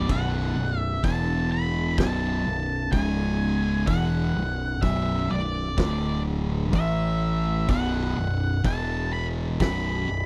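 Ominous and brooding, this short stoner and doom metal cut sets a dark, distorted octave-fuzz lead guitar melody with tape echo over two thick fuzz guitars grinding out the riff, one sitting in the background, while a bright, overdriven picked bass growls up front and an oversized low-tuned acoustic drum kit with dark cymbals, a fat snare and a punchy kick drives it all in a dry, close 1970s-style studio sound.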